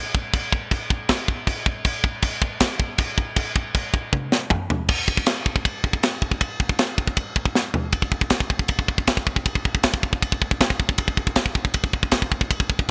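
Dark and epic, this metal excerpt is a solo drum performance at 158 BPM in a straight 4/4, cut from a longer piece. The acoustic kit sounds tight and up front in a studio room, with bright cymbals, a high-tuned snare and a tight kick, set in light reverb and with its top end rolled off above 10.4 kHz. The opening runs in half time, with the china, crash, ride, toms, snare and kick all in play. A fill at 4.1 seconds pushes into a new section, and another brief fill at 7.6 seconds leads into the final stretch. The drums run from 0.1 to 12.9 seconds, carrying the whole arrangement on their own.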